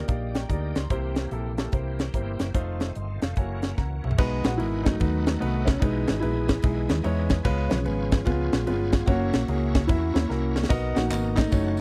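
Uptempo gospel at 147 BPM with a swung, jubilant lift, where a mellow felt-muted upright piano carries the melody from 4.4 seconds over a natural concert grand's accompaniment and fills, a shouting tonewheel organ's sustained chords through slow rotary speaker and chorus vibrato in the background, a round, dark hollow-body electric bass and a crisp, up-front fusion kit with a high-tuned snare and punchy kick, before tambourine and group handclaps join at 10.7 seconds in a dry, close 1970s-style studio sound as the progression settles into B major.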